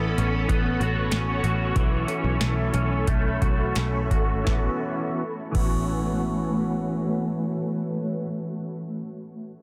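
A straight 4/4 pulse at 83-97 BPM, slowing over the first 4.5 seconds under a filter sweep, comes from a booming, overdriven analog drum machine with deep kick, crisp snare, metallic hats and crash; it plays from 0.2 to 5.8 seconds, beside a round, foam-muted picked bass. This blissful, floating dream pop fragment in A major moves from A6/9 to B9sus4 and back. Up front, a twangy, slightly broken-up electric guitar picks arpeggios through chorus and digital delay, while a blurred, warbling granular pad with its own reverb holds sustained chords in a dense, heavily limited mix with light reverb.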